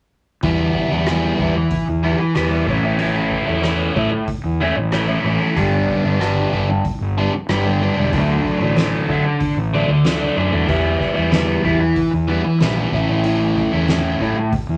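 Trippy and hypnotic, this short psychedelic rock excerpt in straight 4/4 rides a biting, double-tracked overdriven guitar riff with phaser up front, underpinned by a round, fuzzy fingered electric bass and a soft-mallet acoustic drum kit with a fat snare and boomy kick in a big room, all three entering at 0.4 seconds as the chords cycle through Em, A, G and D in moderate studio reverb.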